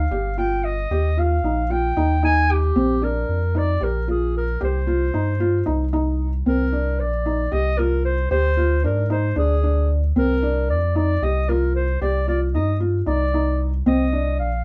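A dark, intimate production sits in a small room with a moderate, short reverb, giving this cut from a longer chamber piece an urgent yet pensive air. The contemporary instrumental writing moves in an uneven 7/8 metre with a straight feel, and all three parts run nearly the full 14.6 seconds. A mellow clarinet carries the melody in a classical solo style, up front yet with a distant, roomy glow. Beneath it, a felt-muted upright piano plays soft, thick-felted arpeggios in a narrow middle register, while a pure sine sub bass holds a deep, clean, smooth foundation with a fast attack and long sustain. The harmony passes through Eb, Bb and Cm before a chordless moment at 6.5 seconds opens the second section, which brings in a D7(b5) with its third omitted, a Cmadd9 and a closing Eb5.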